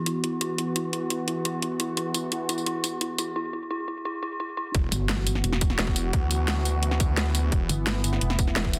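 A dense, heavily limited modern mix with light digital reverb frames this tense, futuristic excerpt of dark technical drum and bass at 173 BPM in E minor. A warbling, evolving sawtooth pad holds sustained chords with a slow filter swell while an eerie, inharmonic FM bell plays filtered arpeggios with dub echo during the build-up, and an overdriven kit of cracking snare, bright hats and tambourine drives from the outset before a break at 3.4 seconds. At 4.7 seconds the drop lands with a barely audible impact, a tight overdriven kick and a snarling, growling distorted saw bass, joined by a pulsing, chorused pluck wobble bass down low.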